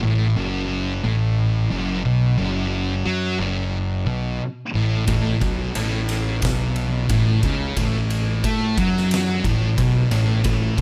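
A straight 4/4 pulse at 89 BPM carries this hypnotic, heavy stretch of stoner and doom metal, cut from a longer piece. Two picked fuzz guitars play a riff over F#madd11: one is dark and set in the background, the other warm and up front. Beneath them, an overdriven fingered bass sounds round, direct and amped. At 5.1 seconds the harmony moves to A69 and an oversized, low-tuned acoustic drum kit joins with a punchy kick, a fat snare and shadowy ride cymbal, all in a bright, pumping stone room, while a light small-room reverb frames the sound.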